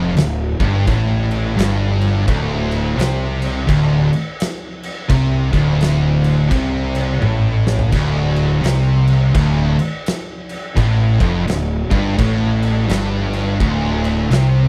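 Heavy and brooding, this stoner and doom metal excerpt crawls at 85 BPM in D minor with a swung 4/4 feel, as three guitars grind out low riffs on a D5 chord: a thick fuzz guitar and a bright, double-tracked high-gain guitar sit in the background, while a compressed fuzz guitar stays very quiet beneath them. A punchy, overdriven fuzz bass plays an octave below the guitars, and an oversized low-tuned drum kit with a boomy kick, fat snare, toms and crash sounds gritty and saturated in a big, pumping room, entering at 0.2 seconds and breaking into a drum fill at 7.2 seconds. The overall sound is dry, with little reverb.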